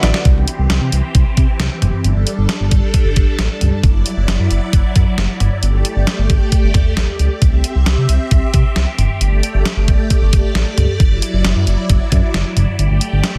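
A drum fill on a detuned 8-bit digital drum machine opens this nocturnal, melancholic synth-pop excerpt at 134 BPM, its thumpy kick, medium-tuned snare, hi-hat and toms sitting up front with a tape-warm, sampler-style character. A smooth, dark synth bass blending sawtooth and square waves with ring modulation holds sustained notes beneath a swirling, vintage string machine whose slow-attack sawtooth chords, treated with ensemble chorus and phaser, shimmer brightly further back. The progression moves through C, Gsus2 and Dadd9/F#, set in light reverb within a dense, heavily limited modern master.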